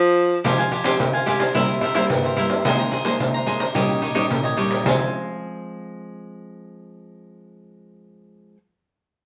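Nostalgic yet lively, this short excerpt of samba and choro in a straight 4/4 opens with a brief band accent before the ensemble settles in at 0.4 seconds. A mellow, crisp cavaquinho picks out the upper accompaniment, and a warm, full-bodied nylon-string guitar fingerpicks a classical-style lower part beneath it. The jingly pandeiro, played with soft hands, adds percussion up front until it drops out at 5.0 seconds, leaving the two string parts to carry on to 8.6 seconds. The harmony moves from Fmadd9 through C7, Abadd9/C and Eb7/Bb before returning to Fm as a new passage begins. A wet studio ambience surrounds the playing.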